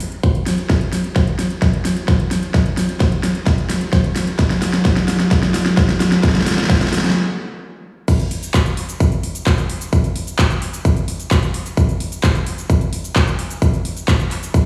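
A straight 4/4 pulse at 130 BPM drives this anthemic, emotional EDM cut, taken from a longer piece. A big-room dance drum kit, with its huge snare, metallic hats, crash, handclaps and shaker, builds through a fill, and a punchy, layered electronic kick joins at 0.2 seconds; both are overdriven and up front. After a stop at 7.2 seconds, the drop lands at 8.1 seconds, framed by a lush hall reverb and the stony ring of a bare room heard through a big sound system.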